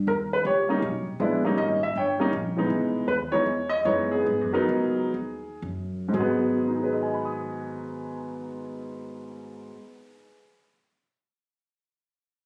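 Jazz piano trio fragment in G# minor, smoky and swinging in 4/4 at 111-160 BPM, with a woody, thumpy pizzicato upright bass under a natural, up-front grand piano carrying the melody over chords moving from D#7 through C#m9 and G#m9 to G#m7, the tempo slowing between 2.7 and 6.1 seconds, all captured on a phone in a club room with moderate reverb and compression.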